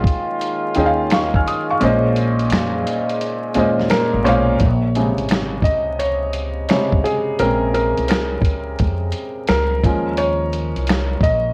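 Lo-fi hip hop at 86 BPM with a swung 4/4 groove in Bb minor, nostalgic and reflective and cut from a longer piece: a soft, intimate felt-muted upright piano sits up front with audible action noise and a cassette-tape, low-passed haze; a vintage brass ensemble with soft attacks and light vibrato holds sustained chords until 4.6 seconds; a woody pizzicato upright bass anchors the low end; and a gritty, compressed sampler-style drum kit of finger snaps, hi-hat, snare and thumpy kick plays throughout, its kick muted from 1.8 to 4.6 seconds, after which the piano takes a solo, all wrapped in warbling old tape, vinyl crackle and light reverb.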